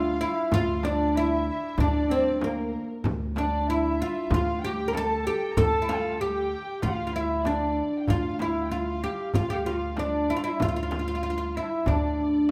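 A fretless oud, plectrum-plucked with a woody double-string tone, carries the melancholic, longing melody up front from the start. A soft-attacked classical clarinet and a distant, dark bowed violin section with vibrato and sul tasto colour play second lines, over a growly pizzicato upright bass. In the background a crisp, compressed metal-shell darbuka joins at 0.2 seconds and a close, dry frame drum struck with hard hands at 0.5 seconds, all set in a moderate recital-hall reverb in this short section cut from a longer Turkish makam ensemble piece.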